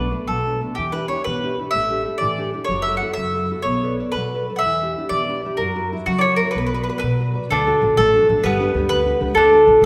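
An up-front mandolin carries the melody in this romantic, wistful Italian folk serenade, its picked double strings sounding woody in B minor, in 6/8 at 126 BPM, tuned to A4 = 438 Hz. Beneath it, a full-bodied fingerpicked nylon-string guitar and a growly pizzicato upright bass move through chords from Bm7 and Em7 to F#7 and back to Bm. A second mandolin enters at 7.5 s with a low line as the harmony shifts to D and G, and the whole group sits in a reverberant church or concert hall that gives the sound a long, glowing tail.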